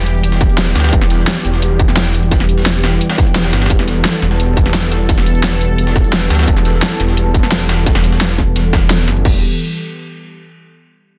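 A dense, heavily limited modern mix with light reverb opens this dark, mechanical slice of technical drum and bass, moving at 173 BPM in a straight 4/4 and sitting on an E minor chord throughout. A thick, detuned saw bass sits up front, its saturated unison tone mellow and lush, pumping with sidechain under chorus. Above it, a resonant pad holds sustained chords with a bright, evolving, ring-modulated edge, also shimmering with chorus and sidechain pumping. Three drum parts stack together: a distorted electronic kick arriving at 0.4 s, an up-front dubstep kit with a huge snare, bright hats and crashes, and a gritty, compressed breakbeat kit tucked into the background with its hats, snare and small-room ambience high-pass filtered. The parts hold steady until a brief new section begins at 9.3 s, as this cut from a longer piece draws to a close.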